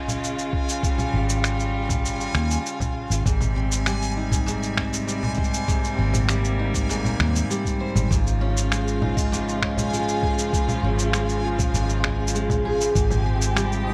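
A rich, distant string quartet opens this pastoral folktronica excerpt with bowed, expressive sustained chords, its soft attack, vibrato and portamento giving the chamber sound a gentle sway. Beneath it, a vintage muted electric bass plays dark, round, punchy low notes with tube saturation, while a reversed, granular texture glimmers high in the background with dreamy, bright sustains and its own reverb. Sampler-style electronic congas, cabasa and finger snaps join almost at once, followed by a thumpy, muffled, pitched-down electronic kick, setting an unhurried, straight 99 BPM pulse in 4/4. At 3.3 s a picked steel-string acoustic guitar enters with full-bodied arpeggios, fresh strings and audible finger squeak, roughened by 12-bit sampler grit and trailed by delay. The harmony moves between Db over Ab and Abmaj7, and a light reverb holds the warm blend together.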